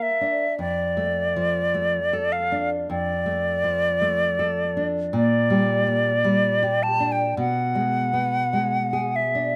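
This romantic duo for flute and classical guitar unfolds at a slow, rubato 53 BPM in 4/4, in D minor, with a melancholic, yearning mood. The silver concert flute carries the melody between D5 and A5, its tone pure and metallic with vibrato and a soft attack, sitting up front. Beneath it, the nylon-string guitar provides fingerpicked accompaniment from F2 to Bb4, sounding warm and deep with fresh strings and the occasional finger squeak, also placed up front but a little lower than the flute. Both instruments play throughout this short excerpt, each carrying a slapback echo, while light reverb frames the outdoor recording. The harmony moves from a rootless Gm to Dm/F at 0.6 seconds, then to Gm/Bb at 5.1 seconds, and settles on B5 at 7.4 seconds.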